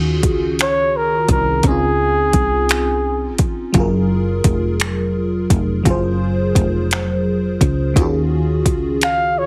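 A breathy flugelhorn carries the melody up front in this sensual, slow R&B piece in six-eight, played close-miked in a jazz style with vibrato, soft attacks and scooped notes under a tape echo; it enters at 0.6 s, falls silent at 3.4 s and returns at 9.0 s. Beneath it, a dreamy FM electric piano layered with a soft pad holds the accompaniment, its detuned, warbling vintage tone made lush by chorus as it moves through Ebm11, Dbmaj9 and Gbmaj9 before coming back to Ebm11. A woody fretless electric bass adds a dark, growly, round low end with a hollow-body character and a lush chorus of its own. The smooth electronic drum kit, with finger snaps, hi-hat and a soft kick, sits up front with overdrive and the feel of being re-recorded in a small room. Light reverb and a heavily compressed, radio-like sound give this excerpt, cut from a longer piece, a warm glow.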